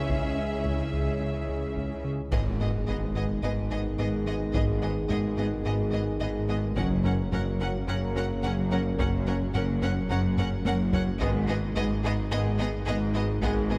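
A straight 4/4 pulse at 108 BPM drives this tense, vast cinematic cue in G# minor, cut from a longer hybrid orchestral and electronic score, with a background taiko ensemble struck with hard sticks, a punchy sub bass with a pitch-drop attack, and a round, dark analog bass riff entering at 0.1 s alongside bowed double bass and woody cello sections. A clear, distant violin section carries the intense melody over a focused second violin line, lush violas, a warbling lo-fi tape-like pad with chorus, and sustained chords from a French horn section and a very quiet trombone section, while the harmony moves from C#m through G#m and F# back to G#m. An electronic impact lands at 2.3 s, and a drum fill arrives at 10.4 s.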